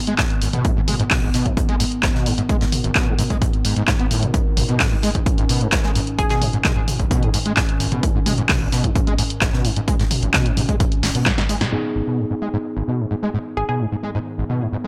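A squelchy, distorted acid bass riff drives this trippy acid house clip over a punchy analog drum machine with handclaps, snare, hi-hat and toms, a dry up-front electronic kick and a soft brushed kit in the background, while a dark, warbling tape-like pad holds sustained chords beneath, a hollow square pluck flickers briefly at 6.2 and 13.6 seconds, and after a drum fill a bright, bell-like tine electric piano enters with filter-swept stabs from 11.7 seconds as the drum machine and kick drop away.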